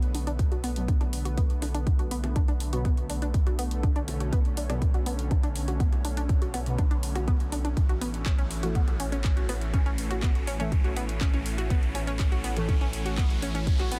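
Melodic techno at 122 BPM in B minor, this dramatic, melancholic build-up moves from Bm7 to A at 7.8 s, driven by a punchy, up-front electronic kick and a deep, rumbling detuned saw bass, while a house kit of congas, handclaps and metallic hats pumps in a small room, a chorused analog pluck arpeggio with delay rides a filter sweep, a lush unison pad holds sustained chords, very quiet warbling analog brass adds stabs, and an electronic riser enters in the background at 3.5 s under a dense, heavily limited modern master.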